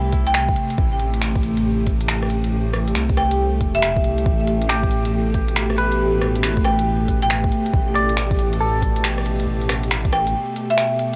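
Wistful and rainy, this future garage excerpt moves at 138 BPM with a 64% swing on the sixteenths, as a warbling, nostalgic pad with chorus, phaser and sidechain pumping sustains Am7 and then Gadd9/A over a deep, rumbling detuned saw bass. A soft, overdriven electronic kick and a smooth-hatted kit of finger snaps, hi-hat and rim clicks sit under a bright marimba melody struck with hard mallets and trailed by tape echo. From 4.7 to 9.1 s a clean, twangy electric guitar adds gritty 12-bit sampler colour and pumping, all set in light digital ambience with vinyl crackle.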